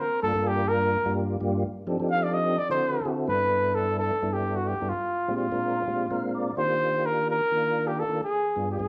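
A wet, roomy reverb surrounds this funky, slick jazz fragment, cut from a longer piece and played live in one room at 255 BPM (eighths) in a straight 7/8. A bucket-muted trumpet carries the melody up front with a veiled, soft-attacked tone and vibrato, taking a solo from 0.0 to 3.3 seconds. A round, dark tonewheel organ accompanies through a slow rotary speaker with chorus vibrato and adds a brief fill at 5.9 seconds, over rich extended chords such as Gm9, Bb13 and Ebmaj9.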